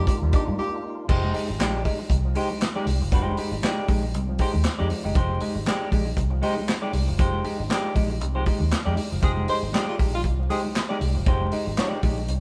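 Cool and funky, this 118 BPM groove in F dorian swings its sixteenths lightly, a passage lifted from a longer piece played live by a band in one stone room, with vinyl crackle on top. It opens on a brief band accent and break over Cm7, where a fat tonewheel organ with key click, overdrive and a slow rotary speaker holds sustained chords until 1.1 seconds, alongside a breathy tenor saxophone's scooped second line. At 1.1 seconds the harmony moves to Fm9 and a clean semi-hollow electric guitar enters with spring reverb, carrying the accompaniment to the end. Underneath, a dark, foam-muted fingered bass sits round and punchy alongside an up-front soul drum kit with tight kick, medium-tuned snare, hi-hat, handclaps and crash, its top rolled off. A stringy auto-wah clav stabs throughout, very quiet bright congas add percussion, and the saxophone returns for a short phrase from 9.2 to 10.6 seconds.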